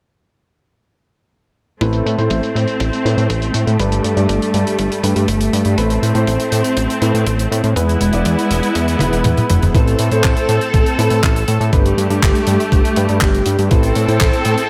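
From 1.8 s, a nostalgic, melodramatic italo disco groove in A minor starts at 121 BPM in a straight 4/4, with a thumpy, tape-toned electronic kick, a dry, damped 70s drum kit of handclaps, hi-hat and toms, and a fat, detuned sawtooth analog bass sitting up front. Lush, bowed studio strings with vibrato hold sustained chords over Amadd9, Gadd9 and E, while a dark, boxy grand piano with audible action noise plays stabs through tape echo. A filter sweep runs on the drums up to the second section at 9.7 s, with a fill from 9.0 s leading into it, and the mix sits in a small room with light reverb, cut from a longer piece.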